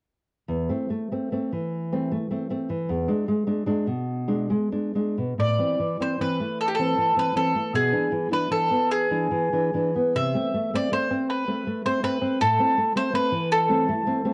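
A nylon-string classical guitar opens at 0.5 s, thumb-plucked and warm, setting out a slow A minor accompaniment in 6/8 over Am/E and a rootless E7. This elegiac, solemn romantic duo moves with a rubato feel at roughly 43-55 BPM, counted in dotted quarters. At 5.4 s a bowl-back mandolin enters up front with the melody, its bright, picked double strings ringing above the guitar as the harmony passes through Am, E7/B and Am/C before settling on Am. Both instruments sit close and carry the soft grain of a home cassette recording, with light reverb and a small-room ambience around them. This passage is cut from a longer piece and ends at 14.3 s.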